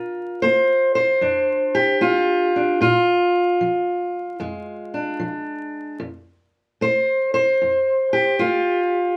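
Rollicking yet soulful, this short excerpt of acoustic country blues moves at an easy 75 BPM in 4/4 with a strong swing on the eighth notes. A lone fingerpicked steel-string acoustic guitar carries the whole 9.2 seconds, its parlour-sized body giving a dark, boxy tone that sits up front. The part ranges from F2 up to C5, laying down a Bb7 chord before settling onto F at 6.0 seconds. The playing is tuned to A4 = 445 Hz and captured live in a single room with a lively ambience. A layer of vinyl crackle adds an old-record patina.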